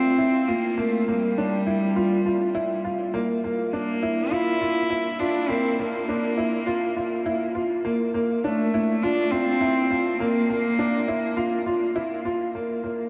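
Soaked in a huge, lingering reverb, this dreamy electronica passage is cut from a longer piece, and its parts sit up front within a vast, wet space. A clear, woody upright piano, slightly detuned and touched with subtle chorus and a diffuse ambient delay, plays a riff in straight 4/4 over a Bb5 chord. A rich, reedy cello with a gut-string, period-style tone, bowed by one player, carries the melody through the same hazy delay. The mood is hypnotic and cinematic. The cello drops out at 12.0 seconds, leaving the piano sounding alone until it stops at 13.1 seconds.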